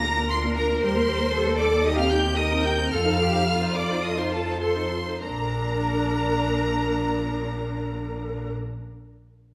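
In a straight 4/4 pulse that slows over the first 5.2 seconds, this graceful, spirited fragment of a quick classical-period movement for string orchestra has the violin section carrying a high, lush melody with soft attack and vibrato, while a second violin line sounds focused with a smooth top. Violas supply expressive accompaniment with portamento, and the bass is shared by smooth, distant cellos and clear, up-front double basses, with all five sections playing from 0.0 to 8.5 seconds. A new section begins at 5.2 seconds, and the whole ensemble is heard from further back in a reverberant recital hall.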